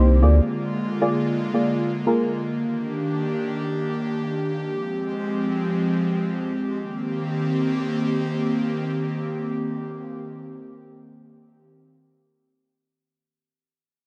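An airy, breathy pad carries this excerpt of a pop piece in C minor, tuned to A4 = 438 Hz. It holds sustained chords from the start to 11.7 seconds, its soft, detuned tone carrying a noise layer, a slow attack, a long release and chorus, and it sits up front in the mix. Alongside it at the opening, a deep, mellow chord stab plays accompaniment with a dark, filtered pluck that has a fast attack and a decaying tail, also treated with chorus, before it drops out at 2.4 seconds. The harmony moves through Bb7/D, Ebmaj7 and Fmadd9, then settles on Cm7 as a new section begins at 6.8 seconds. In free time and with a driving, energetic mood, the piece has a dark, warm production wrapped in light reverb and digital ambience.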